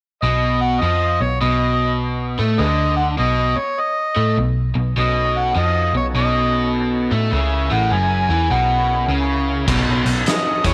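A swung 4/4 groove at 102 BPM drives this gritty blues rock and southern rock excerpt in B mixolydian, in the spirit of a power trio, moving from B7 to F#7 and back. An amplified, overdriven harmonica carries the melody from the start, its tone edged with light vibrato, tongue slaps and tape echo in a jazz-inflected solo style. Beneath it, a bright, double-tracked electric guitar riff and a dark, round, foam-muted picked bass sit up front through the whole passage. At 5.0 seconds a thick tonewheel organ enters in the background with sustained chords, colored by slow rotary speaker, chorus vibrato and light overdrive. An oversized, low-tuned acoustic drum kit arrives only at 9.7 seconds with a boomy kick, fat snare, hi-hat and dark crash cymbals, its saturated sound pumping in a big room. The whole takes place in a small room with light reverb.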